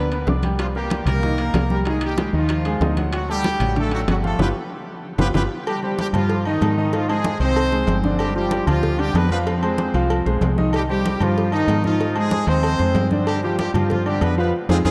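A bright, tightly doubled horn section carries the melody up front from the start, over clear, short-sustained concert grand piano and a dark, round, foam-muted fingered electric bass, giving this driving, fiery salsa excerpt its push. Just behind, ringing hard-hand congas and vintage metal-shelled timbales with agogo bells sit in the background, while soft low bongos and cowbell are barely audible. A drum fill and band accent at 4.4 s lead into a new minor-key section, and the whole band is bathed in a vast, echoing cathedral reverb.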